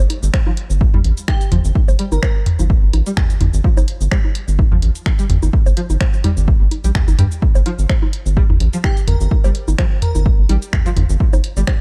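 Quirky and sparse, this minimal techno excerpt in G minor runs at 127 BPM with a light swing, built on a punchy, up-front electronic kick, a rubbery square bass that pumps against it, tape-warm drum-machine cabasa, finger snaps and hi-hat, overdriven electronic bongos and toms, a twangy, string-like resonator pluck riff with chorus and tape echo, and an airy, dreamy lead that surfaces briefly at 1.3 and 8.8 seconds, all set in a dark digital ambience.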